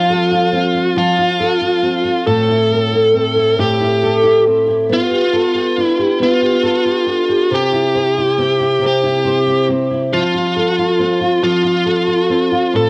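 This cut from a longer pop piece has the hazy sound of a home cassette recording, its top end capped at 10.4 kHz and placed in a small room with light reverb. At a slow 46 BPM in a straight 6/8, counted in dotted quarters and tuned to A4 = 444 Hz, it carries a romantic, heartfelt mood. A double-tracked classical nylon-string guitar plays fingerpicked accompaniment from A2 to C5 throughout, sitting up front with audible finger squeak and a tape-worn tint. Over it, a bluesy overdriven electric lead guitar, picked and also up front, sings the melody in the narrow span from F4 to A4, its warm distortion colored by cassette tape and tape echo. The harmony moves through F, Am7, Gadd9 and C before returning to F at 10.1 seconds.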